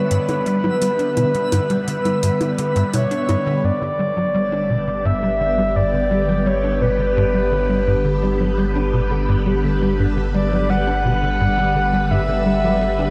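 Ambient, sequencer-driven space music with an expansive, cosmic mood, built on a tight, punchy sequencer bass riff with a plucky filter, set under a breathy, flute-like synth lead that warbles with vibrato and analog delay, while a swirling, phased string machine holds vintage chords up front. Twinkling granular sparkle sits in the background, and metallic electronic hi-hat and bongos appear only until 3.4 seconds, after which a deep, round sub bass enters at 3.6 seconds. The whole dreamy mix is soaked in a lush hall reverb, cut from a longer piece.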